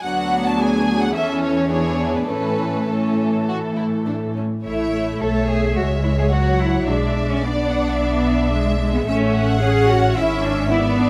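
Close, detailed microphones and light reverb give this cut from a longer classical-period movement for string orchestra a lively, spirited sound in A major, moving at roughly 98-111 BPM in 4/4 with a rubato feel. The warm first violins carry the melody over a second violin line. Distant violas supply accompaniment, and a lush cello section holds the bass, all playing smooth, even, bowed lines with vibrato. At 4.7 s a rich double bass section enters up front, deepening the low end as the harmony moves through C#m and E7 back to A.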